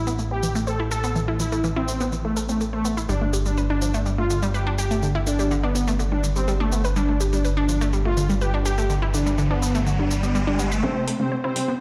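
A fat, sawtooth analog bass sits up front from the very start alongside a brassy, warbling synth brass melody with chorus and tape echo, joined almost at once by a bright wave-folded unison pluck spinning arpeggios through cassette-tape grit and a layer of electronic shaker and metallic hi-hats re-recorded in a small room. This short cut from a longer melodic techno piece moves in a steady, straight feel, its dark, melancholic mood carried by the detuned, vintage brass line over the sustained, filter-swept bass. An electronic riser enters at 8.5 seconds and runs until the bass drops out at 10.8 seconds. At that point an airy, dreamy lead with chorus and vibrato takes up a second line, while a muted, deep dub chord stab, filtered and very quiet, lands beneath it as the harmony settles onto a minor seventh chord. The whole mix is bathed in light reverb and a large studio ambience, like a big sound system playing in a bare room.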